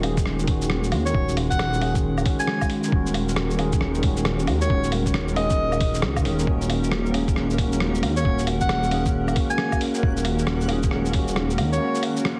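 Rainy and ghostly, this future garage excerpt at 135 BPM in Eb minor swings its 16ths over a single Ebm7 chord, with a clean tine electric piano through analog delay, a blurred granular cloud pad in the background, and a deep, rumbling detuned saw bass pumping beneath a muffled, pitched-down lo-fi sampler-style kit of hi-hat, rim click, shaker and woodblock with soft-clipped snare and a thumpy electronic kick, while a bright alto saxophone with light vibrato and subtone carries the solo melody from 1.1 s and a reversed, dreamy swelling texture drifts in very quietly at 7.5 s, set in a recital-hall reverb with vinyl crackle and a dense, heavily limited master.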